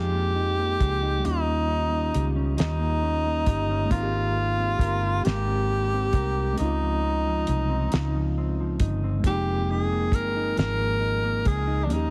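A breathy tenor saxophone leads this slow six-eight R&B piece in F minor, carrying the melody up front over a mellow electric guitar, a tine electric piano and a vintage muted fingered bass, with a cloth-damped drum kit entering at 0.8 seconds. The tempo sits at 45 BPM in dotted quarters with a straight feel, and the mood is yearning and late-night. The saxophone is whispered and intimate, played in a jazz style with vibrato, soft attacks and scooped notes, while the clean, fingered guitar adds a dark second line beneath it. The electric piano stays mellow and in the background, the foam-muted bass is round and amped, and the drums thud with a fat snare, tight kick, hi-hat and a rolled-off top. The harmony moves from Fm11 through Eb7, Abmaj9 and Dbmaj9 before returning to Fm11 at 9.2 seconds, all within a small room and a heavily compressed, radio-like sound in this fragment cut from a longer piece.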